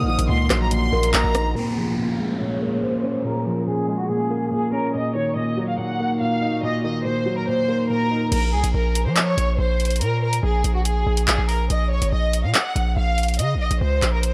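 A lush, bowed violin section carries the melody throughout this tense, cold drill excerpt in Bb minor, its rich vibrato softened by a low-pass filter and echoed with digital delay, while a dark, mellow grand piano and a warbling, lo-fi tape-like pad hold the harmony until 8.3 seconds. A punchy 808 bass and an overdriven drill kit with hi-hats, rim clicks, handclaps and crash hit briefly at the start, joined by a brief velvety synth lead, then drop out as a downlifter and filter sweep carry the middle stretch. At 8.3 seconds the bass and drums return in half-time at 142 BPM beneath the strings, framed by light reverb and a dark production.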